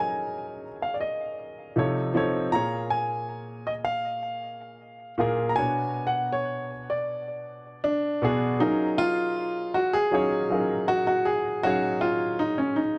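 A grand piano melody with short sustain and a touch of tape echo opens over a second, intimate grand piano accompaniment whose action noise is audible up close, both present from the very start. This smooth, romantic R&B fragment moves at 79 BPM in a straight 4/4 in F# major, drifting from F#maj13 through F7b13, A#m7 and Bmadd9 before the harmony returns to F#maj13 as a new section begins at 8.6 seconds. Light reverb and small-room ambience frame a dark, warm production that keeps both pianos up front.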